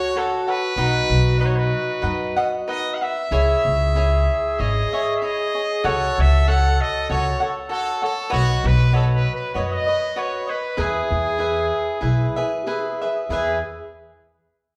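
A band playing live in one room fills a large, wet studio reverb in this festive, proud mariachi fragment cut from a longer piece, moving in 4/4 at 96 BPM with a rubato feel in E major. A brilliant, classical-style trumpet carries the melody up front, with a pure, straight-toned baroque flute on a tongued second line and a crisp, bright picked cavaquinho in accompaniment. A woody pizzicato upright bass joins at 0.8 s as the chords pass from F#m through B and C#m to a closing E.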